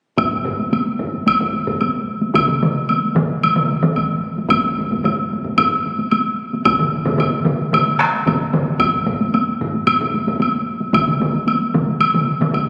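Taiko drums struck with heavy and hard sticks open at 0.2 s beside an up-front, woody woodblock, driving a ceremonial Japanese traditional piece at 112 BPM in straight 4/4, with one close, dry taiko layer, another set in a small room, a vintage, band-limited one pushed forward, and a further close, heavy-sticked taiko group joining at 2.3 s, the whole captured on a phone in a wet concert hall in this cut from a longer performance.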